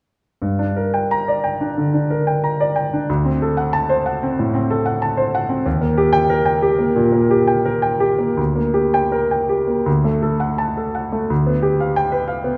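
A clear, up-front grand piano with a vintage, smooth tone and short sustain rings into a wet recital hall reverb. This romantic classical character piece for solo piano sits in G minor at a rubato 79-96 BPM in 4/4, its bittersweet, stormy mood carried by a harmonic path from Gm through D7 and Eb to Gm/D, D and finally G7/D. Spanning D2 to Bb5, the piano plays alone from 0.4 to 12.6 seconds in this fragment cut from a longer piece.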